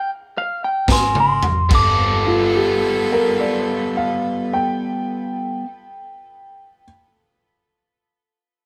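A twangy, slightly broken-up electric guitar through a small old amp carries the melody with a warbly pitch drift in this swaggering, gritty cut from a 71 BPM electric blues shuffle in G mixolydian, which opens on a stop while slowing down until a punchy drum fill from a raw garage kit at 0.9 seconds brings in a biting overdriven guitar riff, bright jazz-style horn stabs with light vibrato and digital delay, and a round, foam-muted vintage electric bass, before a dark, woody upright piano with audible action noise adds a second line from 2.3 seconds, the band playing live in one moderate stone room.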